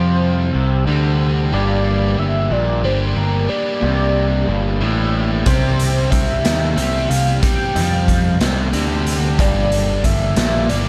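A shimmering, retro pulse-width lead carries the melody from the start with chorus and vibrato, over a biting overdriven guitar riff with subtle chorus, a crunchy guitar riff colored by phaser, and a growling, overdriven electric bass sitting up front. This moody, cool indie rock excerpt moves at 61 BPM in a straight 6/8 in G dorian, shifting between C5 and Gm chords. A raw garage drum kit of hi-hat, punchy kick and medium-tuned snare enters at 5.5 seconds, saturated and gritty with a pumping stone-room sound, all set in a small room ambience.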